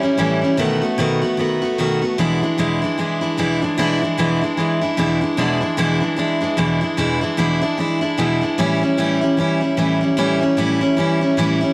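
A moderate spring reverb and studio ambience surround this rowdy, retro rock fragment at 150 BPM with a swung 4/4 feel in E mixolydian, where a bright, full-bodied picked dreadnought steel-string acoustic guitar plays alone up front through tape echo, moving from A7 to B7 before settling on E7 at 2.2 seconds and shifting back to A7 at 8.6 seconds.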